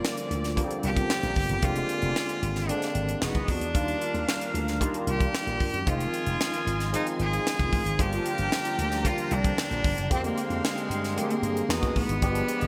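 A tight, up-front funk drum kit with a high-tuned snare and gated reverb drives a straight 4/4 at 113 BPM, joined at 0.3 s by a growly, envelope-filtered slap bass in this nocturnal, urban slice of polished 1980s jazz-funk pop. A bright, intense solo cello carries the melody with light vibrato over a barky, lightly overdriven tine electric piano with ensemble chorus, while a punchy horn section with digital delay plays a second line in the background through chords such as Gm7, Bb13/F and Emaj9. From 5.9 s a woody, lush studio string section adds sustained chords, all set in a glossy digital production with a moderate, lush hall reverb.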